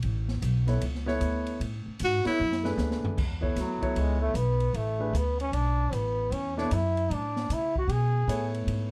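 Modal jazz with a spiritual, open mood, this excerpt swings at 153 BPM in 4/4 over an E7sus4 in E mixolydian. It rests on a woody, growly pizzicato upright bass, a small-room acoustic drum kit with dark cymbals and a boomy kick, and mellow grand piano accompaniment. A close-miked tenor saxophone with vibrato, a soft attack and plate reverb offers a brief solo phrase at 2.0 s while the drums play a fill, and then a bright, punchy trombone takes the solo from 3.6 s, forceful yet distant and roomy, all within a warm production touched with light reverb.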